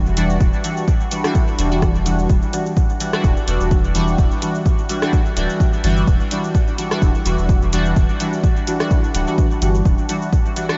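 A punchy, up-front electronic kick drives this deep, nocturnal dub techno fragment at 127 BPM in E minor with a light 16th-note swing, alongside a juicy, detuned polysynth of square and sawtooth waves whose resonant filter-swept Em9 stabs come through chorus, phaser, dub echo and sidechain pumping, while a round sine sub bass pumps below and an analog drum machine's cabasa, hi-hat and rim click, re-recorded in a large room, ring out through dub echo, all set in light reverb and a digital ambience.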